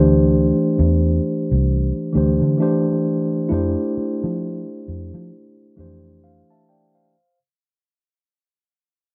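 A mellow tine electric piano and a dark, round, foam-muted fingered electric bass open this introspective, late-night neo-soul R&B fragment at a slow 66 BPM with a swung 16th-note feel, moving from Dsus2 to Fmaj9 in a close, dry 1970s-style studio sound with light reverb. A fade runs across the fragment until 7.1 seconds, the bass drops out at 6.4 seconds, and the piano carries on until 7.4 seconds.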